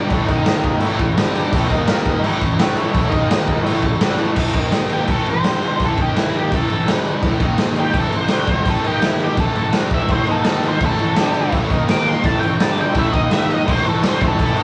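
Rowdy and raw, this garage rock excerpt at 168 BPM drives a double-tracked fuzz guitar riff over an up-front, punchy, gritty drum kit with a rolled-off top, while a buzzy overdriven combo organ holds background chords through 0.0-4.3 s and returns at 10.1 s, and a dark octave-fuzz lead guitar takes a solo from 4.9 s, all in a rough rehearsal-room sound with small-room reverb.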